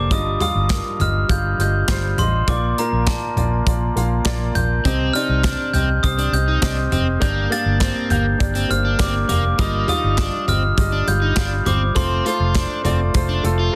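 A ringing, bell-like glockenspiel struck with brass mallets carries the melody high above this uplifting, hopeful piano-driven pop piece, its vintage, band-limited tone giving the tune a metallic sparkle. Beneath it, a grand piano with a present, polished sound plays the accompaniment through a chord cycle that moves from Ebadd9/G through Bb, Cm and Gm before returning and landing on F. A dark, round electric bass, foam-muted and amped, anchors the low end, while an acoustic studio drum kit with an airy feel, punchy kick, medium-tuned snare, hi-hat, toms and handclaps drives a straight 4/4 groove at 101 BPM. At 4.9 seconds an overdriven semi-hollow guitar joins with a picked, warm riff set back beneath the other parts. The dry, dense, heavily limited modern master rounds out this short excerpt cut from a longer piece.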